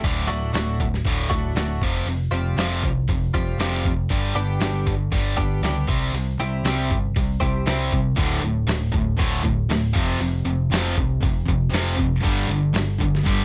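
Driving a straight 4/4 at 118 BPM, a lo-fi sampler-style drum kit sets a thumpy kick, medium-tuned snare and hi-hat under a muffled, pitched-down, tape-warm sheen, giving this cathartic, anthemic quiet-loud alternative rock excerpt its pulse. A picked electric bass sits low and round, dark and punchy through an amp, while a tight distorted guitar plays a bright, up-front riff across the full 13.4 seconds. For the first 8.0 seconds, a clean, compressed twelve-string electric guitar spins arpeggios with a subtle chorus over chords moving from D to Fsus2, G and C. At 8.2 seconds the harmony shifts to power chords on D5, F5 and G5, and a second distorted electric guitar, compressed and set in the background, joins with its own riff. The room is dry, with little reverb, keeping the parts close and direct as this cut from a longer piece carries its weight.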